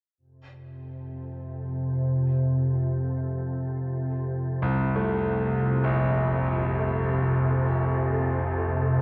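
An organ-like drone sits up front in this dark ambient excerpt in free time and F major, its calm, detuned, ring-modulated tone thickened by ensemble chorus and built-in reverb as it sustains from F2 to C3 starting at 0.7 seconds, while a breathy, wind-like tuned noise texture hovers on A4 in the background. At 4.6 seconds a brilliant concert grand piano enters with arpeggios reaching from Bb1 to A3, its deep bass and polished presence trailed by diffuse ambient delay. The whole is bathed in a huge reverb with a dark production, leaving a cavernous, unsettling mood.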